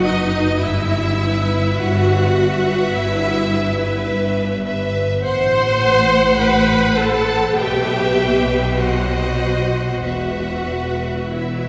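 Moving in a slow, rubato 4/4 at around 46-53 BPM, this melancholic, elegiac excerpt of a romantic movement for string orchestra in E minor sets a clear, distant first violin melody, touched with vibrato, above a focused second violin line, while the violas, warm and up front, carry the accompaniment with soft attacks and expressive portamento. Cellos sit in the background and double basses with a smooth top anchor the bass, the harmony drifting from B/F# through Em/G and F#dim/A to a B chord at 8.8 seconds and settling on an open E at 10.0 seconds. A long church reverb gives the bowed ensemble a lush, cavernous halo.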